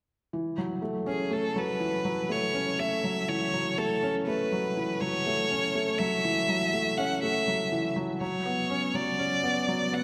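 A rich, focused violin, played by a single player, carries the melody from 1.1 seconds, its bowed line sung with vibrato in a moving, cinematic electronica piece in F# minor at 122 BPM. Underneath, a felt-muted upright piano repeats a mellow, intimate riff from 0.3 seconds, its action noise audible, with both instruments up front. The short excerpt rests on F#m7 before shifting to Bmadd9/F# at 8.2 seconds, all bathed in a wet concert hall reverb.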